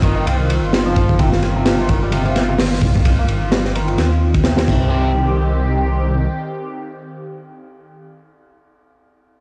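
Recorded at home on cassette with light reverb, this swaggering, energetic breakbeat clip opens on a crunchy, swung acoustic kit with a punchy kick, high-tuned snare and dark cymbals, driven by a thick, menacing detuned saw bass with transformer saturation. A biting overdriven guitar riff runs through tube saturation, tape echo and a filter sweep, while a swirling, warbling analog pad holds sustained C minor chords with phaser, chorus and sidechain pumping. The drums stop at 4.8 seconds, the guitar at 5.1 and the bass at 6.3, leaving the bright, vintage pad alone.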